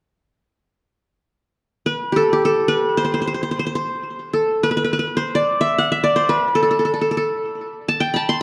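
Unmeasured and free in time, this brief fragment of a longer Turkish piece drifts with a melancholic, longing mood. A solo qanun carries the melody, entering at 1.9 s and sounding until 8.4 s, its plectrum-plucked triple strings giving each note a bright-edged attack. The instrument sits up front, with a tape echo trailing its lines and a moderate recital-hall reverb opening a sense of space around it. Its melody moves between G4 and C6. The overall production leans dark and warm, framing the qanun's warm acoustic tone.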